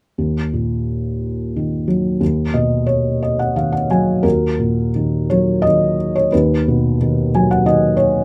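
A felt-muted upright piano, dark and intimate with thick felt and audible action noise, plays alone and up front in this brooding, bittersweet classical fragment, cut from a longer piece, in Eb minor, tuned to A4 = 437 Hz. At 88 BPM in 3/4, its uneven, rubato pulse moves between Ebm and B/D# across two sections, with felt piano fills arriving at 2.2 and 7.0 seconds. Close, detailed microphones and light reverb keep the muted tone near and vintage in character.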